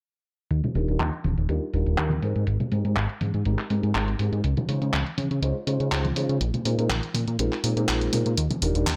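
A lightly swung 4/4 groove at 122 BPM drives this short excerpt of filtered disco house in E-flat major, with a funky, feel-good mood. A house drum kit with handclaps and hi-hat runs from 0.5 to 9.0 seconds, its electronic, layered sound re-recorded in a small room and passed through low-pass filters on the hats, snare and room, and a filter sweep moves across the kit. Up front, a punchy analog bass built from sawtooth, pulse and triangle tones with ring modulation gives a plucky, fast-attack, decaying line between Eb1 and Db3, also low-pass filtered. Tambourine and congas sit in the background with a vintage, band-limited acoustic colour. A concert grand piano enters at 0.7 seconds with a warm, boxy tone, deep bass and long sustain, treated with phaser and low-pass filter as it moves through Ebmaj7, Abmaj7, Dbmaj7 and Bb7sus4 before returning to Ebmaj7, all set in light reverb and small-room ambience under a broader filter sweep.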